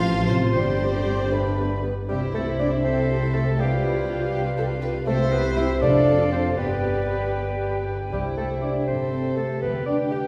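A playful, whimsical cinematic film cue in C major at 80 BPM in 6/8, where a soft-attacked, sul tasto chamber violin section carries the mischievous melody over a second, richer violin line, an airy, metallic flute, a quiet clarinet, a punchy oboe and a background bassoon, while a lush viola section, mellow French horn chords, ringing thumb-plucked harp arpeggios, woody cellos and double basses fill out the harmony and low end, with a dark tuba adding weight only until 1.9 s, the ensemble heard from further back in a reverberant recital hall.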